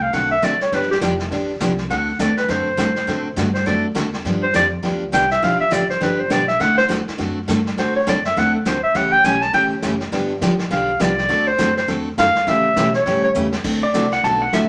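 Country western swing at a down-home, swinging 204 BPM in D mixolydian, where a breathy, scooped clarinet with vibrato solos up front until 13.6 seconds over woody, growly pizzicato upright bass, bright, full-bodied picked acoustic guitar with finger squeak, and a dark-cymbaled vintage brush kit in a small room, before a drum fill at 13.4 seconds hands off to a clean, compressed lap steel that enters at 13.8 seconds with fingerpicked slide and volume swells, all set in a club reverb.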